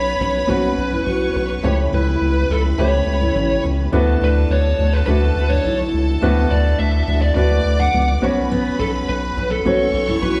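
Piano-driven pop in D major at 105 BPM, this uplifting 10.4-second excerpt sets a dark, fuzz-distorted electric lead guitar melody over a woody upright piano, a full-bodied fingerpicked acoustic guitar riff, a deep, up-front analog bass, a faint, mellow tonewheel organ holding chords through a rotary speaker, and a distant, focused violin section bowing a second line with vibrato, the band captured live in one room bathed in a large, wet studio reverb.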